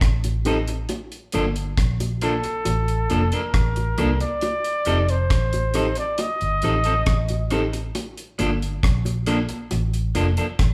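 A band playing live in one large studio room, wrapped in a moderate reverb, carries this short, sweet and romantic lovers rock reggae cut at a relaxed 68 BPM in straight 4/4. Up front, a dark, round, foam-muted vintage electric bass holds the low end from F1 to C2 alongside a deep, dry reggae drum kit with a tight kick, hi-hat and rim click. A mellow tine electric piano, clean through its built-in speakers, and a bright, twangy picked guitar at the edge of break-up fill the middle, shifting between F7 and Gm9, voiced rootless at first. Low-tuned bongos with soft hands sit close and dry in the background, trailed by tape echo. From 2.2 s to 7.5 s a breathy, whispered flugelhorn takes the lead in an intimate jazz style, with scooped notes, vibrato and a smooth top between A4 and Eb5.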